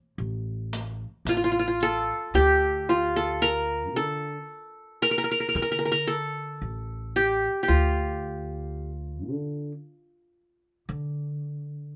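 A straight 10/8 pulse drives this festive, stately Arabic maqam ensemble piece, cut from a longer performance, with a woody pizzicato upright bass up front almost from the outset. A riq with dark jingles and soft hands appears only briefly, from 0.7 to 1.9 s, while the plectrum-plucked qanun enters at 1.3 s and carries the melody with a bright, triple-string tone close up in the mix. Light reverb lends the recording a gentle sense of space.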